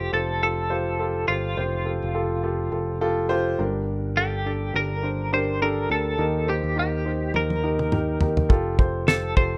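Swung sixteenths at 104 BPM in 4/4 drive this uplifting, anthemic piano-driven pop excerpt in F mixolydian, where a warm grand piano with plate reverb carries the accompaniment, a bright picked electric bass holds the low end, a twangy twelve-string electric guitar plays the melody through tremolo and plate reverb, and a damped 70s drum kit with a fat snare and tight kick enters at 7.3 s with a fill, the rough home demo mix moving from Fadd9 through Gm and Eb back to Fadd9.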